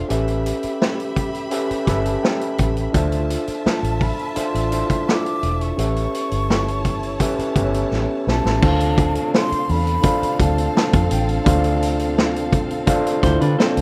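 The recording has a rough home-demo quality with a light touch of reverb, and it captures a short, smooth and cinematic stretch of lush 1970s-style soul in D dorian, moving at a relaxed 84 BPM in straight 4/4. A saturated vintage drum kit with a punchy kick, dark cymbals and a rolled-off top sits up front beside a round, foam-muted fingered electric bass, while a gritty overdriven tine electric piano played through a combo amp carries the accompaniment over chords moving between A7 and Dm9. A distant, focused string section adds a bowed second line with vibrato, and the electric piano slips in a fill early on. A breathy concert flute with lifted highs enters at 3.7 seconds to carry the expressive, tongued melody, and a drum fill leads into the second section. From 8.6 seconds a very quiet, mellow tonewheel organ holds sustained chords with key click and a fast rotary speaker, and at 13.2 seconds a slightly broken-up electric guitar through a small old amp picks out a warm riff just before the cut.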